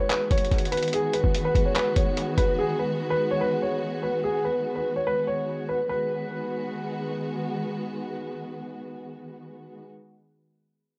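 A dark baby grand piano and a lush, bowed string section open this short cut from a longer trap-inflected hip hop piece, settling into a melancholic, half-time mood over a G#m7 chord. The piano carries the melody with a mellow, long-sustaining tone, softened by a low-pass filter and trailing dub echo, and it falls away at 7.1 seconds. Beneath it the strings hold sustained chords with woody body, a smooth top and gentle vibrato, lingering until 9.9 seconds. A lo-fi, sampler-style kit of handclaps, hi-hat and a thumpy kick appears only briefly near the start, its sound compressed, pitched down and muffled before dropping out at 2.5 seconds. The mix sits in a small room with heavy echo, the piano, strings and drums all placed up front.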